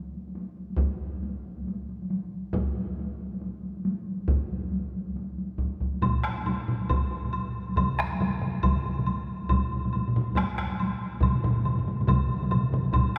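Drenched in a long church reverb, this driving, powerful Japanese traditional taiko passage at 138 BPM in swung 4/4 speeds up throughout: a distant, heavy-stick taiko ensemble opens at 0.1 s, a hard-stick ensemble joins at 0.8 s, and from 6.0 s a close, dry hard-stick ensemble and a woody woodblock come in, with one more hard-stick taiko ensemble joining shortly after.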